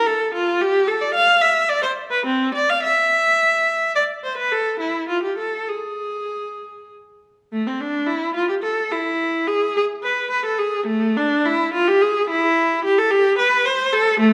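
Classical, baroque-style suite movement for unaccompanied viola in A minor, grave and solemn, moving in 3/4 at 98-113 BPM with a rubato feel. A single bowed viola sits up front with a clear, smooth and even tone and vibrato, ranging from A3 to F5 and playing alone for the full 14.3 seconds, shifting into a second section at 7.5 seconds. A wet recital hall reverb with a 1.7-second decay surrounds the instrument, and this short passage is cut from a longer piece.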